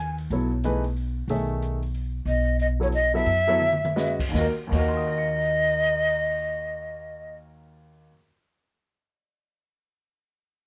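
A breathy, vibrato-laden metal flute carries the melody up front in this searching, spiritual modal jazz fragment, swinging in 3/4 over woody pizzicato upright bass, a natural-sounding baby grand piano with short sustain, and a dark small-room drum kit with a boomy kick that plays a fill at 3.6 seconds as the music slows from 2.3 seconds, then drops out at 4.9 seconds, with light reverb throughout.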